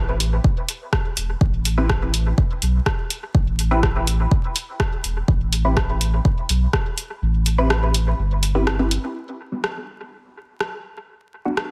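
Dub techno at 124 BPM, deep and hypnotic, built on a round, sine-toned sub bass with sidechain pumping and an up-front electronic kick with a tape-saturated, small-room weight that falls away after 6.8 seconds. A deep house kit of hi-hat and rim click trails dub echo, while muted, detuned sawtooth chord stabs with a plucked filter, phaser, pumping and echo sit over Am7 until the harmony moves to Gmaj7 at 9.2 seconds, where the stabs take a filter sweep. Light digital reverb and vinyl crackle colour a dense, heavily limited master.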